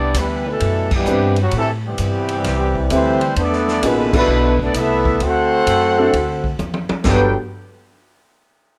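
Big band swing with a joyful, brassy mood, this short cut from a longer piece swings at 130 BPM over lush extended chords. The trumpet section carries the melody with light vibrato, while the trombone section sits up front on a second line, its soft attack softened further by plate reverb. Underneath, a woody pizzicato upright bass anchors the low end, and a distant, roomy drum kit with a punchy kick and rolled-off top keeps the swing moving, adding a fill just before the next section begins. A natural-sounding concert grand with deep bass and its own plate reverb joins at 1.1 seconds, and the whole band hits accents at 0.8 and 4.1 seconds. The sound is a rough home demo in a small, moderately live room, with a warm feel.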